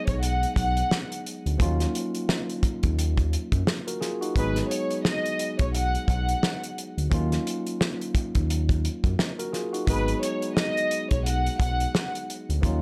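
Boom-bap hip-hop in 4/4 with swung sixteenths, this excerpt of a longer piece has a sombre, reflective mood. A dark studio violin section carries the melody as a close, floating ensemble, bowed with a soft attack and a pure tone, filtered at both ends and set up front. Beneath it, a tine electric piano plays clean, direct accompaniment coloured by cassette tape and filtering. A smooth, gliding synth bass blends sawtooth and triangle waves with wave-folding, adding vibrato and portamento to sustained notes from 0.1 seconds. The cloth-damped drum kit thuds out a fat snare, a tight kick and hi-hat with a rolled-off top and a small-room acoustic sound, while light reverb surrounds the parts as the harmony moves between Abm7 and Ebm7.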